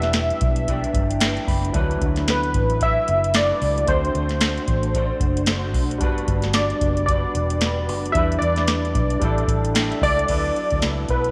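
Round, detuned analog keys carry the melody with lush chorus and slapback echo in this hazy, nostalgic bedroom-pop excerpt at 112 BPM in D major with swung sixteenths, over a barky, lightly overdriven tine electric piano that adds a fill at 0.7 seconds, a slightly broken-up, lo-fi guitar through a small old amp with ensemble chorus and vibrato, a dark, foam-muted fingered bass with tube saturation, and a soft vintage rhythm box with deep kick, crisp snare and metallic hats, set in a moderate echo-chamber room as the chords move from Em7 through D69, Gmaj7 and A7sus4.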